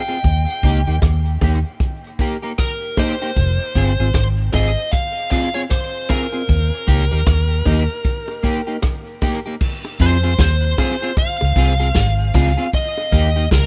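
A swung sixteenth-note groove in 4/4 drives this meditative, hypnotic roots reggae passage, cut from a longer piece, as a vintage drum kit with dark cymbals, a tight kick and rim clicks sits up front beside a round, punchy, foam-muted fingered bass, while close, dry, high-tuned bongos join at 1.0 seconds. A slightly broken-up electric guitar with analog chorus and dub echo carries the accompaniment, and a smooth, picked overdriven lead guitar, also treated with dub echo, sings the melody over a simple cycle of Eb and Fm chords. The rough home-demo mix places everything in studio reverb, with a new section arriving at 9.6 seconds.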